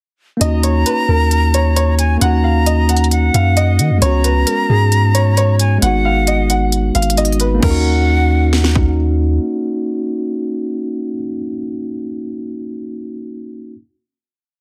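A deep, up-front 808 bass anchors this brooding, hard-hitting half-time trap piece with long sine sub-bass notes and pitch slides, under a drum kit of hard-clipped kick, sharp snare, crash and crisp hi-hats with fast rolls. Above it, a worn baby grand with audible action noise loops a low-passed melody through digital delay, a breathy flute adds a sparse counter-melody with vibrato, and a clean tine electric piano holds close-voiced chords through built-in speakers, all in a dense, heavily limited master. After the breakdown gives way to a final chord at 7.6 s, the bass rings until 9.4 s and the electric piano sustains alone until 13.8 s.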